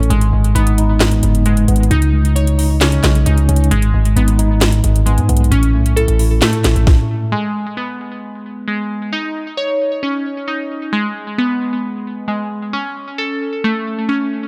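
A knocking, sharp-snared trap kit with metallic hats and handclaps drives this melancholic, menacing half-time hip hop cut at 133 BPM in G# phrygian, joined by a punchy, heavy 808-style bass and a mellow, clean tine electric piano until about 7.3 seconds, after which only the glassy, bright digital keys carry on through 14.5 seconds, their arpeggios shimmering with chorus, phaser, delay and a filter sweep over a G#m, C#sus2, A progression in digital ambience.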